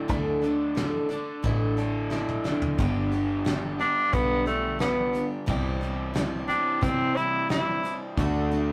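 Hopeful and jangly, this short folk rock and heartland rock excerpt moves at 89 BPM in a straight 4/4, with bright picked steel-string acoustic guitar, warm double-tracked crunchy overdriven guitar riffing, round foam-muted vintage electric bass and a dark soft brush drum kit with a fill at 2.1 seconds, before a clear, up-front tenor saxophone enters at 3.8 seconds with scooped notes over chords moving from Dsus2 through G and C, and a very quiet brilliant concert grand piano appears at 8.2 seconds, all in a rough rehearsal-room recording with a small room reverb.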